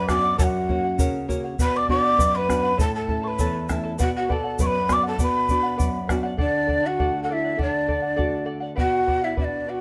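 A large wooden quena carries the melody from the first moment, breathy and up front with a crisp, chiffy attack, a straight, slightly unsteady tone and rolled-off highs. Beneath it a bamboo pan flute plays a softer, more distant second line with vibrato and an expressive touch. A fingerpicked charango adds shimmering double strings, some doubled at the octave, while a bright, classical-style nylon-string guitar fills the low and middle register. From 0.1 seconds a round bombo and a grainy tube shaker mark the steady 2/4 pulse at 100 BPM, and the shaker stops at 6.2 seconds. This short cut of an Andean folk piece in B minor feels both melancholic and festive, moving through F#, Bm and A before opening onto D in a new section at 6.4 seconds, with the ensemble playing live in a stone room whose moderate reverb gives the sound a natural space.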